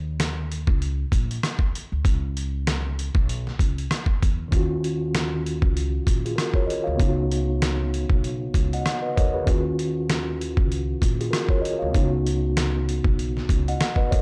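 A compressed, pitched-down sampler-style drum kit anchors this dark, reflective boom-bap hip-hop excerpt, its thumpy kick, medium-tuned snare, rim click and hi-hat sounding gritty, as if re-recorded in a large room, yet sitting up front with a swung sixteenth feel. A woody, pizzicato upright bass with steel strings and tube saturation opens the passage, joined by the drums a moment later in a break. At 4.5 seconds a mellow, clean tine electric piano enters through its built-in speakers, filtered and moving between minor ninth and suspended ninth chords. The recording is dry and raw, with a hardware grit.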